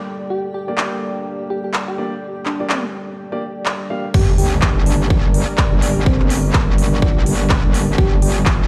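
Bass house with a bouncy, aggressive swing, cut from a longer piece, opening on a sweeping resonant pad and a cloudy granular pad that pump in the background under a round, gentle synth lead with chorus and delay, while a dark baby grand piano adds mellow stabs and a big-room drum kit brings crisp hats, handclaps and crash. At 4.1 seconds the drop hits with a very quiet sub drop, a punchy overdriven electronic kick and a metallic, distorted wobble bass sitting bright and up front. The whole mix plays as if through a big sound system in a bare stone room.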